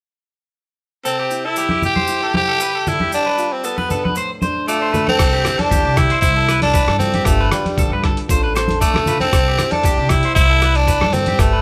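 A straight 4/4 groove at 116 BPM carries this carefree highlife guitar band in C major, where a raspy, up-front tenor saxophone sings the melody over a boxy fingerpicked acoustic archtop guitar, twangy, slightly broken-up electric guitar arpeggios, soft-handed congas and grainy maracas in the background, until a woody, growly pizzicato upright bass and a gritty, pitched-down, sampler-style drum kit with thumpy kick, hi-hat, rim click and crash cymbal join at 5.2 seconds, all in a lightly reverberant live room.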